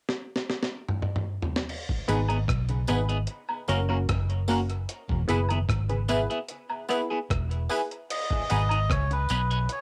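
A breakbeat sampler-style drum kit opens this meditative dub reggae excerpt with a fill, its thumpy kick, medium-tuned snare, rim clicks, toms, hi-hat and crash sounding gritty, compressed and pitched up, with a cassette-tape grain up front. At 2.1 s the band arrives at a steady 75 BPM in G# minor: a dark, round, foam-muted fingered electric bass sits deep and saturated at the front, moving through G#m, F# and E. Above it, a slightly broken-up electric guitar plays phased accompaniment soaked in dub echo, while a detuned, sawtooth-edged chord stab with fast attack and short decay adds chorused, muted punches. A very quiet, twangy guitar through an envelope filter picks arpeggios low in the mix, and tambourine and woodblock add a saturated, echoing percussive layer. A filter sweep runs from 4.9 s to the end, and at 8.1 s a reedy, breathy melodica enters up front with a nasal, echoing melody as the chords return to G#m, all set in light reverb with a home-cassette character.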